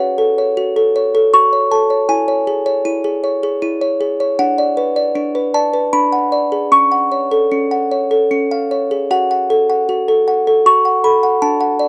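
A lone music box opens the recording with a delicate, tinkling figure, carrying this eerie, fragile classical lullaby by itself across its 11.9 seconds. The piece sits in F# minor in 3/4 at 78 BPM, played with a rubato feel, and tuned slightly sharp to A4 = 441 Hz. Its plucked tones range from C#4 up to C#6, with a small-box character that sounds mid-forward and up front in the mix. The harmony drifts from F# minor through C#m/E, Bm/D and a shadowy G#m7b5/D, then leans on C# before settling back on F# minor at 9.1 seconds. The sound is dry and close, like a 1970s studio recording, and the passage is clearly cut from a longer piece.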